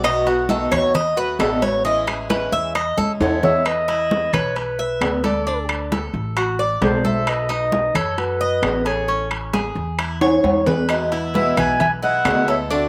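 This is a sunny, danceable slice of Cuban son and guajira in E major at 133 BPM in a straight 4/4. For the first 3.7 seconds the up-front Cuban tres takes the spotlight with metallic, double-strung arpeggios, backed by a bright, boxy swing-style picked acoustic guitar. That guitar drops out at 3.7 seconds and returns at 10.9. Throughout, a dark, thumpy gut-string upright bass and a groove of thin-skinned congas, ringing metal-shell timbales and woody claves in the background carry the rhythm, with drum fills at 3.0 and 10.2 seconds. From 3.2 seconds a soft-attacked, distant clarinet in a classical style sings the melody with slapback echo, joined by a small, fingerpicked nylon-string guitar as a quiet second line with the same echo. The harmony moves through B7, Amaj7, Emaj7 and D, and the open-air recording stays dry with little reverb.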